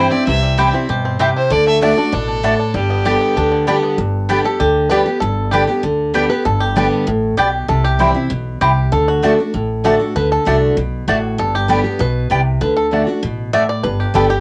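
A home cassette recording with light reverb captures this lively, rustic bluegrass passage, cut from a longer piece, where a biting, bowed fiddle with light vibrato carries the melody alongside a twangy, fingerpicked banjo until 3.8 seconds, after which the banjo takes a percussive solo from 4.0 seconds over a bright, up-front picked steel-string acoustic guitar, round double-strung mandolin stabs and a growly, woody pizzicato upright bass.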